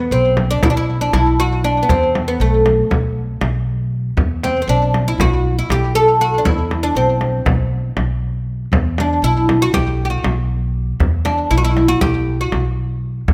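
A fretless oud, plucked with a plectrum on its double strings and touched by a slapback echo, opens this soulful, hypnotic Turkish makam passage in 9/8 alongside a pizzicato upright bass with a woody steel-string tone. A deep, large frame drum, played with soft hands and given a compressed, saturated edge, enters at 0.4 seconds, and all three parts sit up front in a close, detailed recording with light reverb. The oud falls away at 12.6 seconds, leaving the bass and drum to carry this cut from a longer piece to its end at 13.3 seconds.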